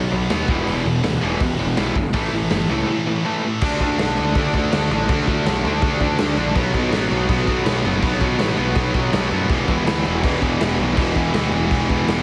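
A straight 4/4 punk rock drive, aggressive and angry and cut from a longer piece, opens with a double-tracked high-gain guitar and two tight distorted guitars picking bright riffs in the background over E5 and A5, shifting at 3.6 s to D5, B5 and back to E5, while a growly fuzz bass digs underneath and a gritty, saturated garage drum kit with punchy kick and medium-tuned snare joins up front at 0.3 s in a stone room, the whole mix dry and heavily compressed into a radio sound.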